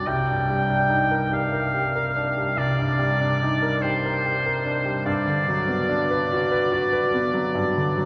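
A clear oboe with light vibrato and a soft attack carries the melody in this luminous, dreamy impressionist classical fragment for oboe and baby grand piano, cut from a longer piece and moving in a rubato 12/8 at 48 BPM. The piano accompanies with an intimate, natural tone, its action noise audible, as the harmony shifts from Cm9 to Gmaj7 at 5.1 seconds. The duo is heard from further back in a cathedral, its long, wet reverb of 4.2 seconds surrounding the slightly sharp tuning of A4 = 441 Hz.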